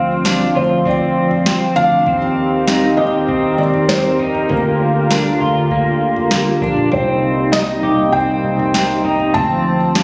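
This dream pop piece, cut from a longer piece, feels melancholic and ethereal, moving in a straight 4/4. A felt-muted upright piano carries the melody in a soft, boxy voice, its hammer action audible and its notes trailing into delay. Beneath it, an up-front analog pad holds sustained chords with a warbling, detuned sawtooth tone, soft attack and long release. An electric guitar through a small old amp picks arpeggios that sound slightly broken-up, compressed and lo-fi, shimmering with analog chorus and delay, while a foam-muted picked bass stays dark, round and punchy. A soft vintage rhythm box joins at 0.2 s with a deep kick, a tonal snare and toms, and the whole mix sits in a lush hall reverb, captured on a phone in the room.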